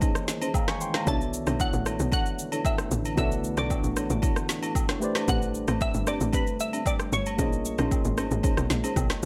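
Amapiano at 114 BPM in a straight 4/4, this deep, late-night fragment from a longer piece opens on a minor eleventh chord and moves through Bm11 and Am11 before returning. The electronic afro-pop drum kit sits up front with a deep kick, woody snare, rim click and shaker, joined by acoustic agogo bells and woodblock with egg shaker and group handclap in a live room. A clean, direct tine electric piano carries the accompaniment, while a moody sawtooth-and-sine pad with sub octave and ring modulation holds sustained chords in the background, treated with chorus, reverb and sidechain pumping. Soft, dark chord stabs with a moving notch, phaser and tape echo add further colour behind the keys. At 1.1 seconds a tight, punchy FM log drum bass arrives up front with a noise layer and fast attack, alongside a glassy, crystalline wavetable pluck melody, nasal yet full-bodied, bathed in chorus and tape echo.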